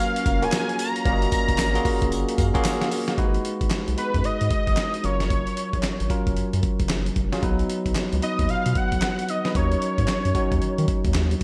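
A big arena sound with a moderate, lush hall reverb frames this confident, bouncy cut of new jack swing R&B, taken from a longer piece and moving at 113 BPM in 4/4 with a swung sixteenth-note feel in G# dorian. Up front, a dusty, sampler-style drum kit with a gritty, compressed character and a thumpy kick pairs its medium-tuned snare with handclaps, hi-hat and tambourine, while a round, deep analog bass joins at 0.3 seconds. A bell-like tine electric piano plays clean, bright accompaniment through slapback echo, and a thick, bold unison lead carries the melody on top with vibrato, slapback and tape echo. In the opening seconds, a lush, detuned pad holds chords quietly in the background with chorus, and a punchy, very quiet polysynth comp adds funky filtered stabs until 3.2 seconds. From there the harmony moves from G#m7 through F#maj7 and B to D#m7, with the lead, piano, drums and bass riding to the close.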